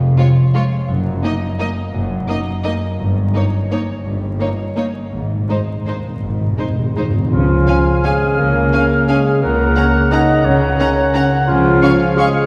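Elegant and festive, this orchestral ballroom waltz in Db major sways in 3/4 at 155-189 BPM with rubato, as a ringing, fingerpicked concert harp spreads arpeggios over a clear double bass section and a soft-attack cello section in the background, while a focused, lush violin section carries the melody above a smooth second violin line and rich viola accompaniment; hard-mallet timpani on calf heads add a fill from 5.1 to 7.3 seconds, and at 7.3 seconds a new section opens as a mellow solo clarinet, an airy flute group, a distant oboe and a background bassoon join warm French horn chords, the recording heard from further back in a wet concert hall with vinyl crackle.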